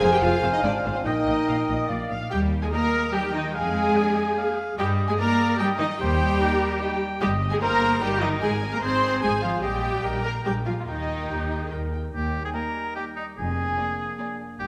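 A wet concert-hall reverb surrounds this short, mischievous and magical cinematic orchestral cue in Eb major at 147 BPM in 3/4, where a very quiet, distant violin section carries the melody over a lush second violin section, an airy flute group in the background, a present solo oboe and a clear solo clarinet heard only briefly at the start and again at 11.3 seconds, while an up-front viola section accompanies, a tight French horn section holds sustained chords with a soft attack, and close, focused cellos join smooth, even double basses on the bass line.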